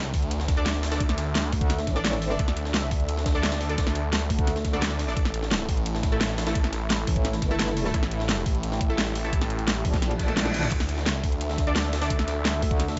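Dark technical drum and bass in 4/4 with a straight feel, tense and aggressive, opening on a sub drop impact as a snarling, distorted saw bass growls up front and a metallic, FM-flavoured wobble bass joins at 1.5 seconds, both pumping or saturated beneath a moody, detuned analog pad with chorus. The drums stack a knocking, tape-toned electronic kick, a huge-snared dubstep kit with metallic hats, and a gritty, pitched-up jungle sampler kit sitting in the background, while punchy orchestra-hit-like synth stabs ring with dub echo. A reverse cymbal and a drum fill arrive around 10.2 seconds, late in this excerpt, which has light reverb and a top end capped at 7.8 kHz.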